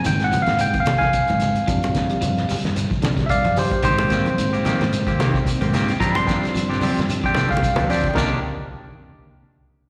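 A live afrobeat excerpt heard through a venue's PA, with recital-hall reverb and a muffled, lo-fi drum kit whose cloth-damped, thuddy hits carry a fat snare, tight kick and dark cymbals, in C minor at 111 BPM with a 16th-note swing and a driving, defiant mood. Up front, a barky, lightly overdriven tine electric piano with slapback echo takes a solo over Abmaj9 and G7sus4 chords. Around it sit a clean guitar playing chorus-drenched arpeggios in the background, a round, deep dub fingered bass, ringing congas, a grainy, distant shekere, and a bright second guitar that adds picked stabs from 3.8 seconds, before a drum fill leads to a Cm9 at 8.2 seconds.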